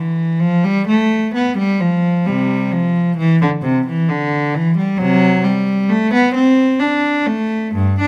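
A close, detailed recording places a single bowed cello up front in a moderate recital-hall reverb, its rich, reedy gut-string tone heard in period style. This serene, flowing baroque-style suite movement for unaccompanied cello moves at a rubato 65 BPM in 3/4, played by one player across a range from G2 to D4. Cut from a longer piece, it begins in C major and turns to G major at 5.0 seconds.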